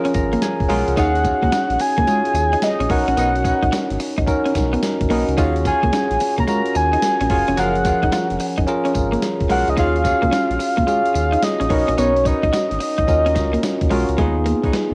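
A swung 16th-note groove at 109 BPM in Eb minor drives this confident, slick new jack swing excerpt, built on a dusty, gritty sampler-style kit with a thumpy kick, medium-tuned snare, hi-hat and tambourine, re-recorded in a large room and run through cassette tape, under a deep, round analog bass. A bell-like tine electric piano opens with a fill from 0.0 to 1.0 seconds and then accompanies through lush chords such as Gbmaj9, Ebm11 and Bmaj9, while a slightly broken-up electric guitar plays a compressed, picked riff and a dark horn section adds tight, jazz-style stabs in the background. Up front, a soft, octave-layered synth lead with chorus, vibrato and a wave-folded, detuned character carries the melody until 13.9 seconds, and the home cassette recording wraps the whole piece in a moderate studio reverb.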